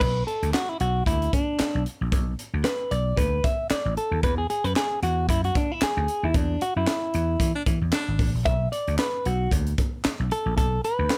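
Funk in B dorian at 114 BPM with a light sixteenth-note swing, this sly excerpt from a longer piece features a clean, compressed electric guitar played with the fingers, soloing up front from the start over Bm7 and E9. A growly, amped vintage slap bass and a crisp fusion drum kit, with its high-tuned snare, punchy kick, handclaps and pumping small-room sound, drive the groove beneath it. A band accent arrives at 6.3 seconds, and a breathy, bright baritone saxophone adds a brief vibrato line at 7.5 seconds, all in a light reverb.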